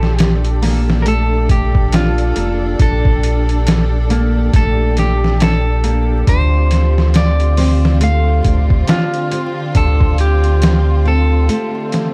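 Trip hop at a slow 69 BPM with a swung 4/4 feel, dark and melancholic, moving from Bbmaj7 to Dm7 in a short excerpt cut from a longer piece, with vinyl crackle and a dry, close sound. A compressed, pitched-down sampler kit with a thumpy kick sits up front beside a round, deep analog bass that drops out at 11.5 s for a brief break. Over them, a bright, clean electric guitar carries the melody through tape echo, lush bowed strings hold sustained chords, a fingerpicked flamenco guitar enters at 0.6 s with gritty 12-bit arpeggios and delay, and a very quiet, tense string-like drone lingers in the background.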